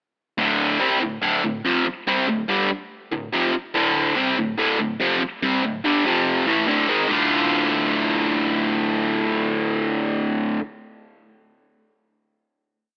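A lone distorted electric guitar opens at 0.4 seconds with a driving, swaggering power-chord riff in D minor, picked at a brisk 143 BPM in straight 4/4 rock time. The bright, double-tracked guitar sits up front, moving through D minor, F and D power chords before landing on a final D minor chord at 7.1 seconds and holding it until 10.5 seconds. A light reverb and a narrow AM-radio colour give the short piece a boxy, lo-fi character.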